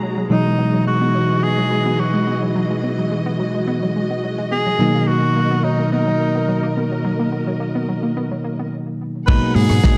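Sleek and groovy, this nu-disco excerpt at 107 BPM in 4/4 opens with a breathy, intimate tenor saxophone melody carrying tape echo over bell-like tine electric piano, lush bowed strings with vibrato and a touch of 12-bit sampler grit, and round analog pluck arpeggios with chorus and echo tucked in the background. The piano, strings and pluck all pump against the sidechain as the harmony moves from Emaj9 to Bmaj7. At 9.3 s, on a G#m9 chord, a bright fingered electric bass with an envelope filter enters alongside a tight kick and a damped 70s drum kit with rolled-off cymbals, all set in dark production with plate reverb and small room ambience.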